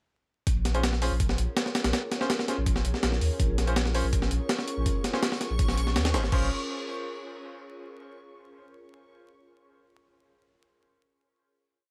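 Dark, atmospheric drum and bass with a jungle edge, where a gritty, pitched-up, heavily chopped breakbeat with a thumpy kick and a tape-warm tone drives up front against a deep, round dub sub bass line. Sparse, brilliant grand piano chord stabs in one shape moved in parallel trail dub echo over a Bbm7, and a reversed, dreamy granular texture holds a high note in the background from 4.4 s. Vinyl crackle colours the recording before a final chord at 6.3 s.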